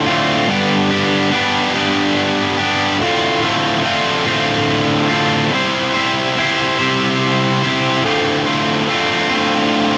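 A lone distorted electric guitar opens this rock piece, its bright, overdriven tone placed up front and double-tracked for a thick, doubled presence. Set in a slow 6/8 at 48 dotted-quarter beats per minute with a straight feel, the music moves through D dorian with a cathartic, cinematic mood. The picked guitar carries the whole passage on its own, ranging from D2 up to C5 across the full 10 seconds. The harmony moves from G to Dm7, then C, and back to Dm7 by 8.0 seconds. A moderate large-studio reverb with a digital ambience gives the sound a sense of space, and the passage is cut from a longer piece.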